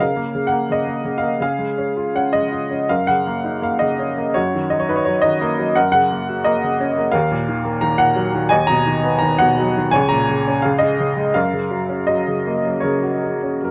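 Classical solo piano in F# major, a sunny, lyrical excerpt at 85 BPM in 4/4 with a rubato feel, where a clear, woody upright piano sits up front with an intimate, slightly detuned character, audible action noise and long sustain, spanning C#2 to A#5 through moderate studio reverb as the harmony moves from C# through F#, D# minor and B before settling on F# at 11.4 seconds.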